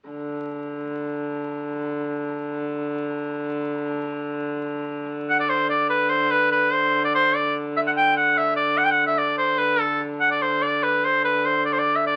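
Medieval music with a rustic, ancient mood, moving at 145 BPM in a straight 3/4 and set in D mixolydian. A single hurdy-gurdy opens alone, holding a close, nasal drone on D3 with an airy, reedy bow sound from its wheel. At 5.3 seconds a bright shawm enters up front, playing a solo folk-style melody between A4 and G5 with vibrato and a smooth top. The two parts carry on together until the fragment breaks off at 12.2 seconds, as it is cut from a longer piece. Moderate studio reverb lends a modest sense of room, while the sound of a very old 78 rpm record, with vinyl crackle and a dulled upper end, gives the whole an aged, dusty character.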